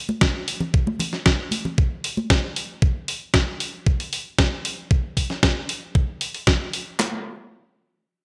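Sleek and cosmic, this short nu-disco cut moves in a straight 4/4 groove wrapped in a bright, 1980s-style digital production with light reverb. A clean 12-bit drum machine sits up front, its thumpy kick, medium-tuned snare and handclaps carrying a tape-warm tone and the air of a large room. Beside it, a dusty soul sampler-style kit adds compressed hi-hat and a fat, gritty snare at natural pitch, also placed up front. Acoustic congas, close and dry with hard hands, add a bright edge from 0.1 to 2.3 seconds before dropping out. The drums carry the groove until the piece shifts into a new section at 7.0 seconds, just before this fragment cuts off.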